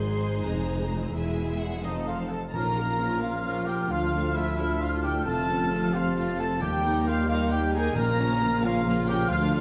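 A heroic, soaring cinematic adventure score in 6/8 at 88 BPM, where bright, focused violins carry the melody over a lush second violin line, very quiet violas, ringing fingerpicked harp arpeggios, intense double basses and dark cellos, before a mellow, distant cor anglais and clear trumpet stabs arrive at 1.8 s, followed at 2.5 s by pure flute ensemble lines, a smooth-topped clarinet, punchy horn and tight trombone chords, and round timpani strokes, set in a moderate scoring-stage reverb.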